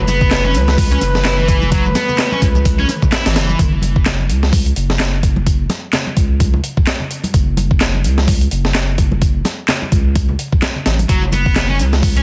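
Opening on a drop, this raw, gritty breakbeat excerpt at 128 BPM in F# minor pairs rich, earthy bowed chamber strings holding sidechain-pumped F#m7 chords with a deep, saturated sine sub bass and a bright, double-tracked fuzz guitar riff; strings and guitar cut out at 3.6 s as the harmony moves to F#5, and the guitar returns at 11.1 s, while a compressed, up-front sampler-style kit with a thumpy kick and high-tuned snare drives a swung groove beside overdriven, layered shaker and handclaps and soft-handed congas in the background, the whole mix dense, heavily limited and dusted with vinyl crackle.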